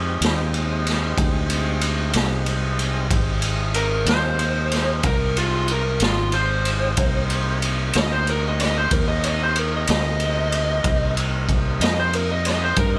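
Brooding and soulful, this slow blues excerpt rolls along in a 12/8 metre with a straight feel. A smooth, clean tonewheel organ holds sustained chords in the background, its slow rotary speaker lending a gentle vibrato. A growly fretless electric bass sits up front, and a raw garage drum kit of boomy kick, medium-tuned snare and ride cymbal sounds gritty and saturated, with a rolled-off top and a small-room character. At 3.8 seconds a dark, overdriven lead guitar through a small cranked amp enters with a picked solo melody. The harmony moves from a rootless Fm7 to Cm7 at 7.0 seconds. The recording is dry, with little reverb.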